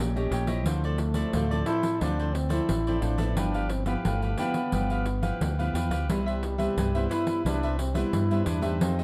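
A straight 4/4 samba and choro groove at 88 BPM carries this yearning yet lively fragment, with a jingly, dry pandeiro entering at 0.2 seconds over a growly, up-front fingered electric bass. A raspy, close-miked trombone takes a gritty, growling jazz-style solo with vibrato throughout, set against crisp picked cavaquinho and fingerpicked classical nylon-string guitar. The harmony moves from D#7#11 through Dm9 and G6 to Cmaj7, all in a dark, warm production with light reverb.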